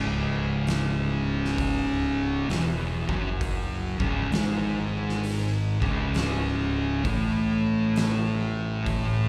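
A slow, swung 4/4 crawl drives this sludgy, brooding stoner and doom metal excerpt, cut from a longer piece and heard as a live club gig through the venue's PA. Two picked fuzz guitars grind out the riff over C#m before shifting to A5 at 7.0 seconds, one dark and up front and the other sitting back in the mix, while a growly fingered bass adds overdrive and tube saturation beneath them. An oversized, low-tuned acoustic kit enters at 0.7 seconds with a punchy kick, fat snare and hi-hat in a pumping big room, its sound saturated and gritty.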